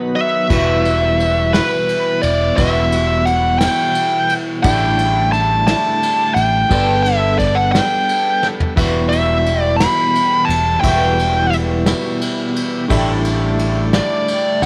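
Folk rock with a heartland rock streak, this reflective, dusty excerpt moves at a slow 58 BPM in a straight 6/8, sitting in E minor over chords of Emadd9, A7sus4 and Gadd9. Up front, a bluesy overdriven lead guitar carries the melody with a warm, distorted edge, while an electric guitar through a small old amp plays a slightly broken-up riff colored by harmonic tremolo. Beneath them, a dark, boxy twelve-string acoustic guitar shimmers in the background with lush chorus and audible finger squeak, and a very quiet tonewheel organ holds shouting, lightly overdriven chords through a slow rotary speaker. A very quiet upright piano adds brilliant, woody accompaniment with short sustain. After a brief break, fingered electric bass and a soft brush drum kit with dark cymbals and a rolled-off top enter at 0.5 seconds, and the drums play a fill at 8.4 seconds. The sound is dry, with little reverb.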